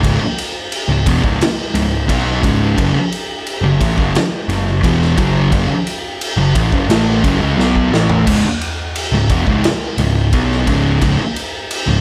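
Stoner and doom metal in C# minor at 87 BPM, brooding and ominous, where two thick fuzz guitars, one set in the background, grind out a distorted picked riff over a growly, overdriven picked bass and an up-front, saturated garage drum kit with a punchy kick and a pumping stone-room sound, moving from C#m to F#5 at 2.8 seconds and returning to C#m at 8.3 seconds after a drum fill from 7.6 seconds, all under light reverb in a brief cut from a longer piece.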